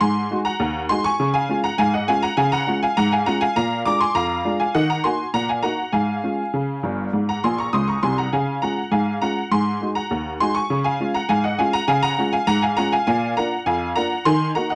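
A playful, cheerful honky-tonk upright piano plays ragtime alone at 101 BPM in a straight 2/4 feel in D-flat major, its detuned, jangly, woody tone sitting up front with light reverb and spanning G1 to Eb6, with a brief fill at 7.4 seconds in this short cut from a longer piece.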